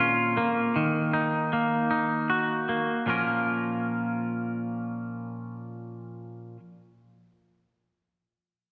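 A lone twangy electric guitar opens this brief rock fragment, picking clean arpeggios across a range of two octaves in a 6/8 metre. Its tone is compressed and placed up front, with a slapback echo trailing each note. The guitar moves between two minor chords, then returns to the first as a new section begins at 3.1 s. A wet concert-hall reverb gives the recording a big arena sound that deepens its brooding, cinematic mood. The guitar plays until 6.6 s, and the passage is clearly cut from a longer piece.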